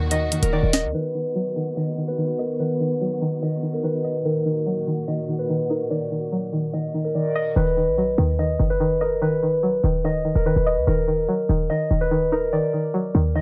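Filtered, lightly reverberant sound frames this cold, ominous half-time drill cut at 145 BPM, where a fingerpicked, ringing concert harp carries the melody over a twangy, chorused string-like resonator pluck and a lush bowed string section that stops at 7.5 seconds, while a sharp electronic drill kit of bright hats and snare appears only briefly at the start and a punchy, tight 808-style bass drops out at 0.9 seconds before returning at 7.6 seconds beneath filter sweeps.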